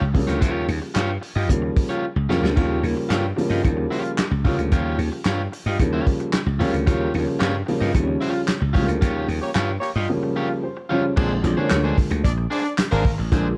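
A dark, warm production in a small room gives this gritty, strutting funk excerpt at 112 BPM a snug, intimate feel. Up front, a growly, punchy slap bass sits beside an acoustic soul drum kit with a tight kick, a medium-tuned snare, dark cymbals and handclaps, and the kit adds a quick fill around 2.0 seconds. A woody, boxy upright piano, thickened by tube saturation, plays stabs over an Eb9 groove, while a twangy, picked electric guitar at the edge of break-up fills in the accompaniment. A band accent begins at 9.0 seconds, a present, vibrato-rich horn section joins on a second line at 9.4 seconds, and a piano fill arrives within the accent at 10.4 seconds. The harmony shifts to Bb9 at 11.2 seconds for a brief closing section before the cut.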